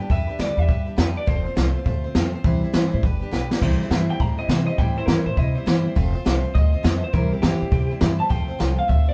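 A live band in one studio room fills this rockabilly excerpt with moderate ambience. The feel is rollicking and upbeat at a brisk 205 BPM in 4/4, with a swing on the eighth notes and chords moving among G, F and C in C major. The upright bass gives woody, thumpy pizzicato from gut strings, and a jumbo steel-string acoustic guitar picks a bright, full-bodied accompaniment. Played with brushes, the drum kit has dark cymbals, a high-tuned snare and a boomy kick, and a drum fill at 3.3 seconds leads into the second section. From 3.6 seconds the electric guitar takes a clean, twangy solo through a small old amp, slightly broken-up and lo-fi, with spring reverb on its tone.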